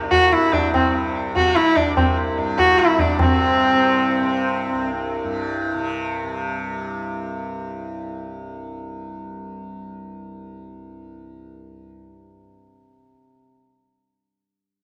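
A softly plucked, buzzing tanpura drone opens this serene, meditative Hindustani excerpt in raga yaman on C at 147 BPM, joined almost at once by an up-front, nasal bowed sarangi gliding with light vibrato and tape echo, a low-tuned tabla with a short ring that drops out at 3.3 seconds, and a very quiet, reedy, breathing hand-pumped harmonium second line, before the shimmering tanpura carries on alone to 13.4 seconds within a wet spring reverb and small room ambience.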